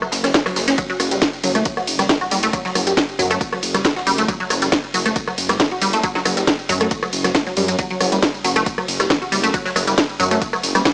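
A straight 4/4 pulse at 137 BPM drives this intense stretch of peak-time techno in F# phrygian, cut from a longer piece and running about 10.9 seconds. An up-front techno drum kit sets the groove with metallic hats, a cracking snare, ride, rim click and tambourine, joined at 0.3 seconds by a punchy electronic kick. Underneath, a dark detuned saw bass rumbles and beats between F#1 and F#2, sustained and sidechain-pumped, while a very quiet acoustic brush kit adds a natural snare and ride from a small room. The riff comes from a juicy, squelchy resonant pluck moving between E3 and F#4, colored by chorus, phaser, tube saturation, cassette tape and tape echo, and shaped by sidechain pumping. A moderate stone-room reverb surrounds the mix, which carries a dry, gritty hardware character and a small-speaker sound.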